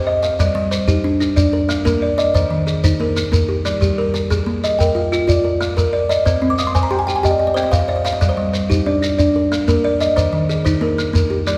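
A lilting 12/8 pulse, felt in long dotted beats with a straight feel, drives this short excerpt of southern African traditional music built on an mbira-style interlocking cycle. Two kalimbas spin arpeggios from the very start. One is a buzzing instrument with a hollow box body, a thumbnail pluck and a ringing, vintage, band-limited tone, sitting up front. The other is a solid-board kalimba with short, woody thumb-plucked notes placed mid-forward and reaching higher, up to Eb6. A grainy, mellow shekere joins at 0.2 seconds, close and up front. A kalimba fill between 6.3 and 8.2 seconds briefly colours the rippling, warm mood, while a wet recital-hall reverb gives the whole ensemble the airy bloom of a church or concert hall.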